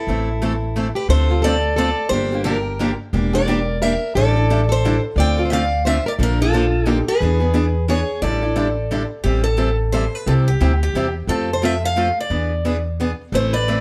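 Fiery and swinging, this short cut from a longer jazz manouche piece moves at 176 BPM in 3/4, with a 60% swing on the eighths, starting in D minor before shifting to A minor at 9.2 s. A picked archtop guitar carries the melody up front, its bright, boxy tone marked by finger squeak. A plugged-in steel-string guitar plays a second line beneath it, pausing at 9.1 s and returning briefly at 13.3 s. A parlour steel-string guitar with fresh strings supplies the accompaniment, while a pizzicato upright bass with gut strings sits prominently, woody and thumpy. The harmony runs through Dm7, Gm7, Em7b5 and Bbmaj7 to E7 and A7sus4, then Am7, C, F and E7 in the closing section. Light reverb and a dark, warm production frame the lively playing.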